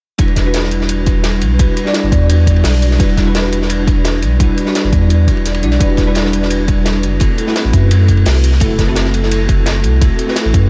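Liquid drum and bass with a dreamy, soulful mood, this short excerpt rides a straight 4/4 groove from start to finish. A bell-like tine electric piano sits up front with a clean, bright tone, its chords thickened by ensemble chorus and trailed by a diffuse ambient delay as the harmony moves from Em7 to F#m7b5 at 7.2 seconds. Beneath it, a round, sine-based sub bass holds the low end with a fast attack and long, sustained notes. The rhythm section layers a punchy electronic kick and a bright electronic hi-hat, re-recorded in a small room, over a crunchy breakbeat kit whose saturated, gritty snare and dark cymbals are high-pass filtered, with a rolled-off top. The whole mix is soaked in a cathedral-sized reverb with a muted top end, lending the track a hazy, floating atmosphere.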